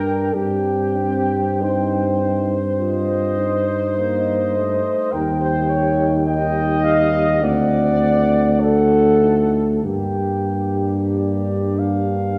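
Solemn and elegiac, this slow, rubato classical brass-band fragment moves at 44-53 BPM through a hymn-like progression from Cm/G to Gm, with a mellow, distant flugelhorn carrying the melody in light vibrato over an up-front, warm French horn section on the second line, a very quiet euphonium and close-miked trombone in the accompaniment, and a smooth-topped tuba anchoring the bass, all bathed in the wet reverb of a recital hall.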